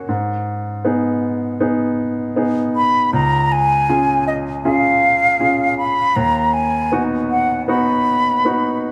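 Pop with a heartfelt, hopeful mood at 79 BPM in a straight 4/4, opening on a clear concert grand piano that lays down accompaniment across G#m, C# and B/D#, its polished tone sitting up front with deep bass and short sustain. At 2.8 seconds an airy concert flute takes the melody, expressive and warm with vibrato, a soft attack and lifted highs, placed just as close as the piano. Light reverb gives the short clip the feel of a small room.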